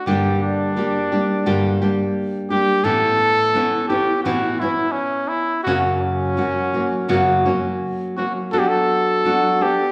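A smooth-topped, classically styled solo trumpet carries a romantic, proud melody up front over warm, fingerpicked nylon-string guitar in this rubato mariachi passage of Mexican folk music at 85 BPM in 4/4, with both parts heard together throughout the 9.9-second section, played live in one room and bathed in a lush large-studio reverb.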